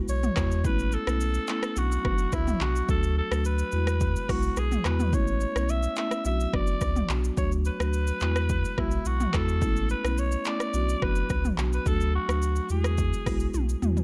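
A round, deep sub bass opens this sunny, romantic afrobeats cut, joined almost at once by a punchy, overdriven, up-front deep house drum kit of kick, handclaps, hi-hat, rim click, shaker and toms, and by a woody marimba played with soft mallets. A raspy, growling alto saxophone with vibrato and delay carries the melody over a cycling Eadd9, Aadd9, Bm and D progression in a straight four-four feel, with a digital ambience around the parts. The sax stops at 13.5 seconds as a drum fill closes the passage.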